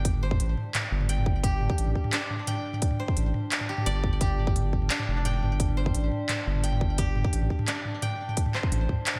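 Half-time drum and bass with a dark, tense mood, cut from a longer piece and resting on a G5 chord. A koto plays fingerpicked arpeggios with a woody, dry tone, its notes trailed by delay. Beneath it, a saturated sub bass sits deep and thick with a fast attack and sustained notes, up front alongside a tight, layered electronic kick that carries the sound of a small room. An organic electronic kit adds handclaps, crisp hats and toms, overdriven and set in a large room. Low in the mix, a metallic, inharmonic drone holds an eerie sustained tone with a slow attack, chorus and its own reverb, while light reverb colours the whole recording.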